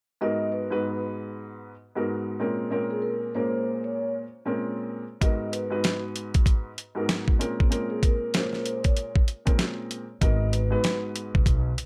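A swung boom-bap hip-hop groove in 4/4 at 96 BPM arrives at 5.2 seconds on a gritty, pitched-down, compressed sampler kit, with a thumpy kick and medium-tuned snare set up front in this reflective, moody G# minor piece cut from a longer work. From the start, a dark upright piano with audible action noise and a vintage cassette character plays G#m9 and A#m9 chords, while a soft-mallet vibraphone carries a metallic, ringing melody touched with tape echo and plate reverb. At 10.2 seconds, a woody, growly pizzicato upright bass joins as the harmony returns to G#m9.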